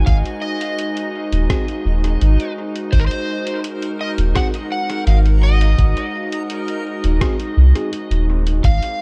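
Ambient dub with a spacious, hazy mood, this short section from a longer piece rests on a single Ab7 chord in a straight 4/4 pulse. A deep, round sub bass sits up front with tube saturation, while a muffled, thumpy electronic kick and a pitched-down, lo-fi sampler-style kit of hi-hat and rim click add overdriven grit and small room ambience, the kit also carrying dub echo. An airy, breathy pad with slow attack and chorus holds sustained chords, and a reversed, granular swelling texture drifts dreamily in the background with its own reverb. An overdriven slide guitar carries the melody through dub echo, and from 1.5 s to 7.9 s a worn, slightly out-of-tune tine electric piano adds distant stabs, also echoed. Digital ambience surrounds the whole mix, lending it a spacious depth.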